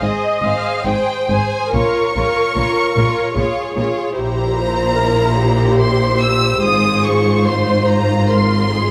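A slow, romantic classical movement for string orchestra in a rubato triple metre, yearning and solemn, heard as a brief passage from a longer work. The violin section carries the melody up front with lush, expressive vibrato, a second violin line runs beneath it in a more focused tone, and the violas add dark accompaniment with portamento. Cellos and double basses hold a rich bowed bass, all set in a moderate recital hall reverb as the harmony moves from Ab through Bbm and C7/Bb to Fm/Ab.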